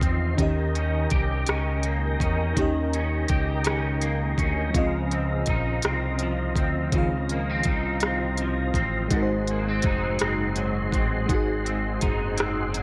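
Slow six-eight R&B at 55 BPM in Db major, intimate and sensual and cut from a longer piece: a tape-warm electronic kit with knocking kick, smooth hats and rim click sits up front beside a dark, gliding sawtooth-and-triangle synth bass with vibrato, while a mellow FM electric piano with tremolo and phaser accompanies, a twangy, slightly broken-up picked electric guitar with ensemble chorus adds a second line, and a clean tonewheel organ with key click and slow rotary speaker holds sustained chords over Eb7, Dbmaj9 and Ab7 in light digital reverb.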